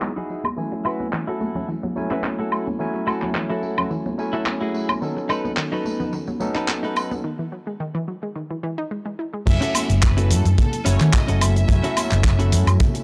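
A dry, gritty hardware recording with transformer saturation gives this cosmic, groovy nu-disco excerpt a dusty edge, as a barky, lightly overdriven tine electric piano with sampler grit, a warbling, detuned sawtooth pluck playing arpeggios and a clean, chorused electric guitar riff ride over a compressed sampler-style soul kit of handclaps, hi-hat, shaker, woodblock and crash, with bright congas and tambourine beneath. Filter sweeps move through the guitar and the arpeggios, continuing through a break that begins at 7.2 seconds, and the pluck stops at 9.4 seconds. At the drop at 9.5 seconds a tight, up-front acoustic kick and a dark, round hollow-body bass punch in while a rich, bowed violin section carries the melody with vibrato and tape echo.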